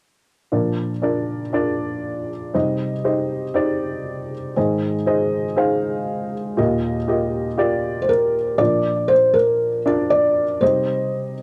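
Cassette-taped and close in a damp little booth, this short, anthemic piano-driven pop fragment sets a woody, slightly detuned upright with audible action noise under chords from 0.5 s, until a felt-muted upright with thick, vintage softness joins it with a smooth, intimate melody at 8.0 s, both parts carrying plate reverb and sitting up front.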